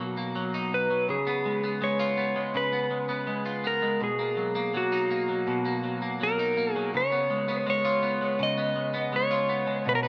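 Soaked in wet spring reverb and digital ambience, this echo-heavy dream pop fragment drifts in an ethereal, floating mood, moving between Bmaj7 and C#7. A bright, picked electric guitar spins arpeggios through lush chorus and analog delay. Up front alongside it, a dark lap steel played with fingerpicks and slide carries the melody in volume swells, its own analog delay trailing behind it, for the full 10.1 seconds.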